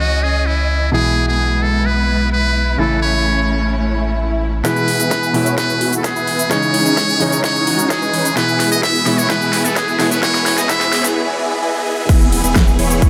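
A buzzy, thin trumpet with a metal mute carries the melody up front with light vibrato in this triumphant, uplifting festival progressive house excerpt, over a polished grand piano, lush bowed strings in the background and a deep, saturated sub bass, each of those three pumping to the sidechain. At 4.6 seconds a huge, detuned supersaw riff with a phaser and a filter sweep arrives alongside a punchy, overdriven kick and a dance kit with a huge snare and metallic hats, building through a drum fill into a break at 11.2 seconds. Very quiet electronic swells, risers and downlifters, entering at 3.9 seconds, carry through to the drop at 12.1 seconds.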